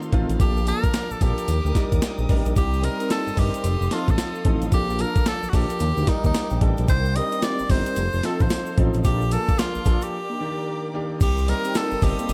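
This is a confident, bouncy new jack swing cut in C dorian at 111 BPM, with a 16th-note swing that keeps the groove springy and a dry, close sound throughout. A gritty, compressed breakbeat-style kit sits up front with a thumpy kick, medium-tuned snare, hi-hat, crash and tambourine, joined by a smooth, detuned synth bass that holds long low notes beneath it. Over the top, an edgy, forceful tenor saxophone plays the jazz-style lead with close-miked punch and vibrato, while a clear baby grand piano fills in the harmony with open, long-sustaining chords. Behind them, a lush string section holds bowed chords, and mellow, dark synth brass adds chorused stabs with a filter sweep, both tucked into the background, while a grainy egg shaker sits very quietly in the mix. The harmony cycles through Bbmaj7, Ebmaj7, Cm7 and F7, with a break from 10.1 to 11.2 seconds before the pattern comes round again in this short excerpt.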